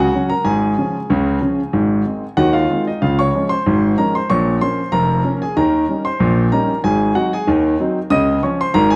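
Ragtime piano in Db major, this jaunty, playful passage moves at 94 BPM in a straight 2/4 feel and is cut from a longer piece. A single concert grand plays solo throughout its nine seconds, spanning F1 up to Eb6, with deep bass anchoring the lower register. The instrument sounds clear, natural and up front, with an intimate presence in which the action noise is plainly audible. A wet echo chamber reverb with a 1.8-second decay surrounds the piano, giving the close sound a lingering tail. The harmony travels from Db over Ab through Ab, Db, Bbm, Eb7 and Ab7 before settling back on Db at 8.1 seconds.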